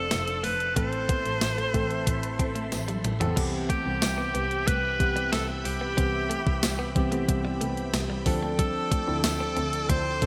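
A bright alto saxophone sits up front, carrying a scooped, pop-style melody bathed in shimmer reverb in this nostalgic, glossy slice of 1980s-style pop. Round, detuned electric-piano-like synth keys with chorus and a swirling phased string machine hold the chords, while a very quiet direct-recorded clean electric guitar plays a picked riff and a bowed double bass adds an even, vibrato-touched low line. An overdriven 12-bit drum machine with a thumpy kick and gated reverb sits up front, joined by a jingly tambourine in the background, and a drum fill from 2.7 to 3.4 seconds leads into a new section.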